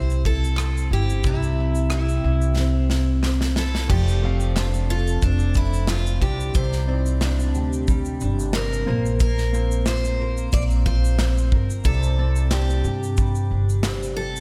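Acoustic pop at 90 BPM with a gentle 16th-note swing, easy-going and heartfelt, this excerpt sets a bright picked steel-string guitar melody with finger squeak and delay over a full-bodied, double-tracked fingerpicked guitar, a woody, growly upright bass and a polished studio kit with tight kick and bright cymbals, as crisp, band-limited handclaps with slapback echo sit in the background and a baby grand piano with long sustain joins at 3.9 s after a drum fill, moving through C, F6, Cadd9 and Bbsus2 in a small, lightly reverberant room.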